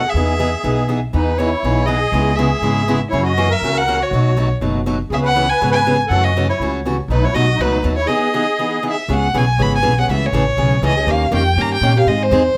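Acoustic string swing in the jazz manouche style, this short cut from a longer piece moves at a brisk, swung clip with a charming, playful mood. A single bowed violin carries the melody up front, its warm tone shaped by expressive vibrato and portamento and set in a plate reverb. Beneath it, a reedy musette accordion with shimmering wet tuning plays a second line until it drops out at 9.0 s. The pizzicato upright bass on gut strings sounds woody and thumpy, and a picked steel-string parlour guitar adds bright, boxy accompaniment with fresh strings, both sitting close in the mix. Around 9.1 s the harmony turns toward a minor colour for a new section, all within a moderate studio ambience.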